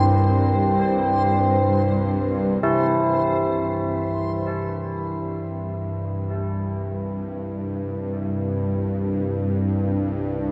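A bronze, ringing carillon plays arpeggios in C major over a tense, string-like bowed drone with a ring-modulated edge, while a reversed, granular texture hovers above until 2.7 seconds, opening this ominous, desolate dark ambient fragment in free time. At 2.6 seconds the harmony settles on C and the synth drone fades in through to 10.5 seconds, as the up-front bells continue through a diffuse delay and shimmer reverb until 10.0 seconds. A vast cathedral reverb with a 5.7-second decay surrounds the whole, leaving a bleak, echoing sense of space.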